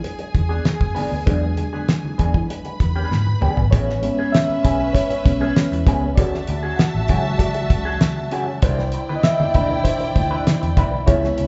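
Lush 1970s-style soul with a smooth, warm mood, built on an up-front, cloth-damped drum kit with a fat snare and tight kick, a round, foam-muted fingered bass, a dark, slightly broken-up wah guitar riff, woody bowed strings with vibrato and very quiet low-tuned congas, while a reedy electric piano with fast tremolo carries the accompaniment until a drum fill at 3.1 seconds leads into its solo from 3.7 seconds, the band heard playing together in a large studio room.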